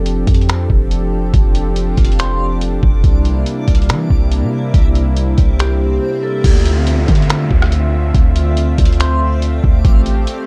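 A bright, ringing, fingerpicked Celtic harp melody with low-pass filtering and digital delay opens over a smooth, detuned sawtooth pad with chorus and sidechain pumping and a deep, boomy 808-style bass, while a gritty, compressed, pitched-down sampler-style drum kit with a thumpy kick, rim click, finger snaps, hi-hat and crash cymbal drives a half-time 141 BPM groove in D minor; a reversed, granular backwards texture hovers in the background from 1.1 s, and an electronic swell and downlifter arrive at 5.3 s just before a brief silent gap at 6.0 s, lending this dark, hazy hip hop cloud-rap excerpt a spacious, dreamy feel.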